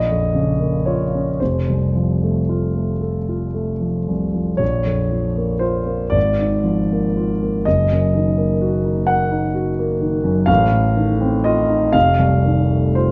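In a slow, rubato 12/8 sway, this mournful, yearning fragment of a romantic nocturne features a solo concert grand piano, warm and up front with a deep bass, moving through minor harmonies toward a dominant seventh and set in a moderate recital hall reverb with a soft, dusky top end.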